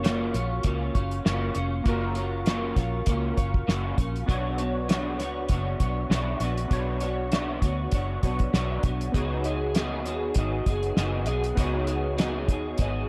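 Dreamy, hazy indie bedroom pop, cut from a longer piece, where slightly broken-up, lo-fi picked electric guitar through a small old amp with ensemble chorus and vibrato sits up front beside a foam-muted, round, punchy fingered bass and a cloth-damped, thuddy drum kit with a fat snare, tight kick, hi-hat and rolled-off top, while detuned sawtooth analog keys with a filter sweep, chorus, phaser and cassette tape wash drift beneath as the chords move from F#maj7 to Bmadd9 at 4.3 seconds and C#9sus4 at 9.1 seconds in a small, lightly reverberant room.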